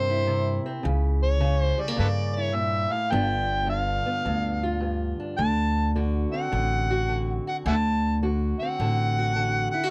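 Acoustic country blues with a rollicking, gritty mood, moving at 106 BPM in 4/4 with a swung eighth-note feel, heard in this short cut from a longer piece. An amplified, overdriven harmonica carries the melody up front with light vibrato, tongue slaps and scooped notes in a jazz-inflected solo style. Beneath it sit a dark, boxy fingerpicked parlour guitar and a woody pizzicato upright bass, also up front, all captured in a dry, close 1970s-style studio sound with light reverb as the chords move from C7 through C#dim7 to G7 and D7.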